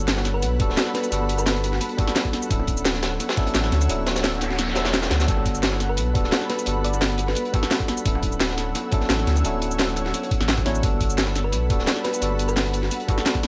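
A deep, thick saturated sub bass sits up front from the outset, anchoring this uplifting, lush liquid drum and bass excerpt at 173 BPM in G lydian, as the harmony alternates between Gmaj9 and Dmaj9. Two drum kits share the beat. An up-front electronic kit brings a cracking snare, bright hats and cabasa, while a gritty, saturated breakbeat kit with a rolled-off top and high-pass filtering sits in the background. A layered, knocking electronic kick joins at 0.6 seconds and drops out from 3.9 to 5.3 seconds while a faint noise sweep fills the gap. Congas and bongos add a vintage, band-limited texture low in the mix. A bright, clean tine electric piano plays the accompaniment beneath an ethereal, detuned pad whose slow-attack chords carry ensemble chorus, built-in reverb and sidechain pumping. In short phrases a round, warbling FM pluck with a thumb-piano-like tone and dub echo, heard at 0.3, 5.9 and 11.4 seconds, traces a quiet melody in a mostly dry mix.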